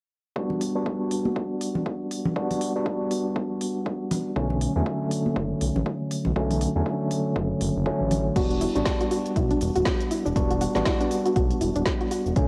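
Hypnotic deep house at 120 BPM in E minor with a swung 16th feel, where bright tine electric piano stabs with sidechain pumping, delay and cassette tape coloring sit up front over a punchy electronic kick, a drum kit with woody snare, smooth hats, cabasa and crash, and soft-handed congas that stop at 8.2 seconds, while a smooth sawtooth-and-square synth bass enters at 4.4 seconds and a soft, round chorused pluck plays arpeggios in the background from 8.4 seconds as the chords move from Gmaj7 through Bm9 to Em9, all in a lightly reverberant, tape-worn home recording cut from a longer piece.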